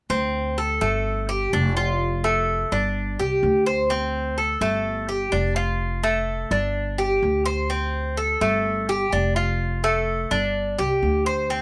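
Moderate studio reverb frames this short excerpt from a longer Cuban son and guajira piece, with the Cuban tres and upright bass both up front and playing together from 0.1 to 11.6 s. The mellow, metallic tres picks arpeggios on its double strings, some of them octave-doubled, while the woody, growly pizzicato bass holds the low end at a straight 126 BPM in 4/4. The nostalgic, danceable music cycles through D5, Fadd9 and G5 chords, tuned to A4 = 438 Hz.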